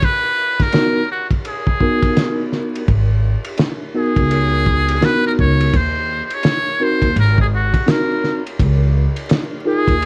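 Jazz-hop with a mellow, cool mood at 84 BPM in G# minor, swung on the 16ths and cut from a longer piece. A metal-muted trumpet carries the melody from the start with a buzzy, thin, vintage tone, vibrato and scooped notes, set in plate reverb over a cloth-damped, thuddy drum kit that sounds muffled and gritty, with dark cymbals, a fat snare and a tight kick. A tine electric piano enters at 0.7 s with clean, mellow chords heard through its built-in speakers, moving from G#m9 through D#m and G#9 to C#69; a woody, growly pizzicato upright bass joins at 2.9 s after the opening break, and the mix wears a worn, warbling cassette-tape character with vinyl crackle and pitch drift.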